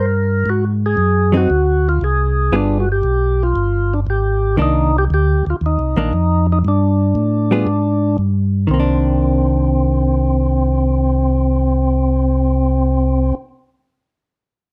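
Swinging at 116 BPM in 4/4, this bluesy, smoky soul jazz organ trio in C minor is cut from a longer piece, moving through Ab7, G7b9 and Cm9 changes. A full, percussive tonewheel organ with key click carries the melody up front, while a second, round and dark tonewheel organ holds down the bass line, both organs turning through a slow rotary speaker. From 1.3 seconds a clean, picked hollow-body jazz guitar with a compressed tone adds accompaniment, all captured by close, detailed microphones in light reverb.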